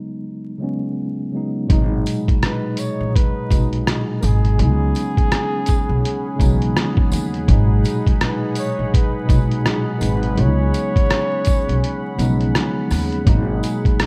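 A breathy, whispered flugelhorn carries the solo melody from 2.4 seconds in this hazy, melancholic lo-fi hip hop excerpt, its vibrato and intimate jazz phrasing dulled by a low-pass filter. A mellow tine electric piano opens alone with cassette-tape coloring. From 1.7 seconds it is joined by an up-front upright bass with woody gut-string pizzicato, a muffled, pitched-down sampler drum kit with a thumpy kick, hi-hat and rim click, and a detuned, warbling analog pad with chorus, with a jingly tambourine entering in the background at 2.1 seconds, all over a swung sixteenth-note feel; a break arrives at 11.8 seconds, and the rough home-demo mix sits in small-room ambience and vinyl crackle.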